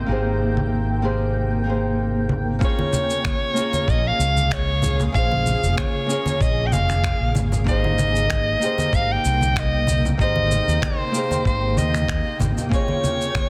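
Sunset chillout at 95 BPM with a light sixteenth-note swing, smooth and relaxed, cut from a longer piece and moving between Abmaj9 and Bbm7. A fingerpicked nylon-string guitar with fresh strings and audible finger squeak plays accompaniment through a vintage 12-bit sampler grit and delay, over a shimmering, ethereal pad of detuned, granular chords with chorus, an octave-up shimmer and a slow attack. A round, dark fretless electric bass sits beneath, stopping at 12.5 s, while gritty, sampler-style electronic congas, cabasa and finger snaps enter at 0.6 s, with soft clipping on the snare. At 2.6 s a bright, forceful soprano saxophone takes the solo melody up front with vibrato and tape echo, joined by a thumpy electronic kick drum, and soft-handed acoustic congas slip in behind at 2.8 s. The mix sits in a moderate concert hall reverb, with a dense, heavily limited modern master rounded off by a low-pass filter.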